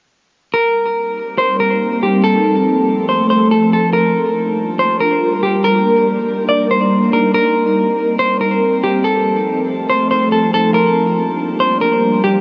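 Drenched in a huge, wet ambient reverb with a dull, muffled top end, this melancholic, spacious half-time hip hop excerpt moves through a Cm7, F7, Gm7 and Ebmaj7 progression. A clean, dark semi-hollow electric guitar carries the fingered melody up front from 0.5 seconds, softened by a low-pass filter and trailed by digital delay. At 1.2 seconds a glassy, ethereal FM pad enters with slow-attack sustained chords, shimmering through ensemble chorus, phaser and its own reverb.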